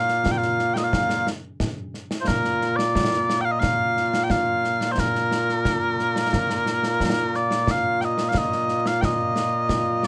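Proud and stirring, this short cut from a longer piece of Scottish traditional pipe music moves at 89 BPM in a straight 4/4 in Bb major, led by mellow small bagpipes carrying the melody with a sweet, continuous tone and vibrato, sitting up front as a solo voice from Bb2 to G5. Concert snare and bass drum join at 0.1 seconds, acoustic and close with dark cymbals and a small-room sound, while the whole is framed by light reverb and a dusky, warm production. A new section begins at 7.7 seconds before the clip ends at 10.1 seconds.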